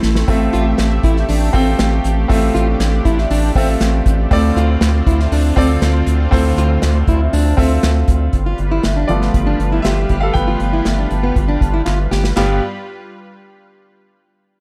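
A dark, lightly reverberant small-room production frames this hopeful, uplifting piano-driven pop excerpt in G mixolydian, moving at a straight 119 BPM in 4/4 through Fmaj7/A and Dm7 before settling on G7. A brilliant, up-front concert grand carries the accompaniment and takes a solo from 8.3 s, over a round analog bass with a deep, mellow, sustained tone and an airy acoustic drum kit played with bundle sticks, its punchy kick and medium-tuned snare opening with a fill and adding another near 11.9 s. A full-bodied fingerpicked jumbo steel-string guitar enters at 0.5 s with a riff, a lush, warbling detuned sawtooth pad with chorus holds sustained chords beneath, and a very quiet, crisp group handclap joins at 0.8 s.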